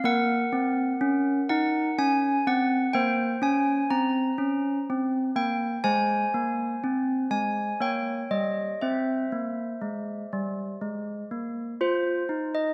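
A dark production with a moderate scoring-stage reverb frames this solemn, wintry classical fragment in 3/4, cut from a longer piece, where a solo set of up-front handbells with hard clappers rings bright and clear from G3 to Bb5 through shifting harmonies that settle on an open F5 at 11.8 seconds.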